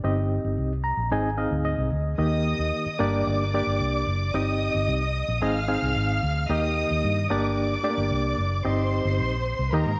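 A moderate plate reverb surrounds this uplifting, joyful soul excerpt at 111 BPM, as a barky, reedy electric piano with light overdrive and fast tremolo carries the accompaniment and plays a fill from 0.6 to 2.2 seconds, a round, punchy, foam-muted fingered electric bass holds the low end, and a veiled con sordino string section enters at 2.2 seconds with lush, bowed vibrato over chords moving through Cm/G, Ab, Eb and Gm.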